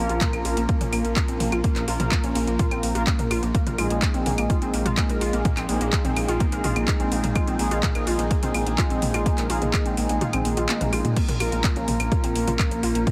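A straight 4/4 pulse at 126 BPM drives this cinematic melodic techno excerpt, with an overdriven, up-front deep kick and a layered deep house kit of claves, handclaps, toms, crash and metallic hats; the kick drops out from 10.2 to 11.2 seconds while a drum fill lands. Underneath, a rumbling detuned saw bass pumps against the beat, as a warbly, lo-fi dusty pluck spins delayed, chorused arpeggios and fat, nasal analog synth brass fires off stabs over a shift from Bbm to Ab/Bb and back. A bright, morphing wavetable pad sits in the background with phaser and reverb, a mellow analog drone creeps in at 12.1 seconds, and the whole mix has a heavily compressed, radio-like sound in a light digital ambience.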